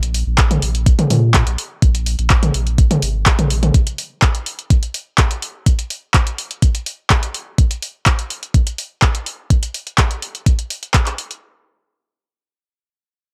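A straight 4/4 acid house groove at 125 BPM drives this hypnotic, trippy excerpt, with a punchy analog drum machine supplying handclaps, hi-hat and toms throughout while a thumpy, sampler-style electronic kick enters at 0.4 s, both sitting up front with a tape-warm, small-room character. A deep, round sine sub bass with fast attack and sidechain pumping holds the low end until 3.7 s, moving between Ab1 and Bb2. The dry, gritty hardware sound carries little reverb, and the tuning sits slightly low at A4 = 436 Hz.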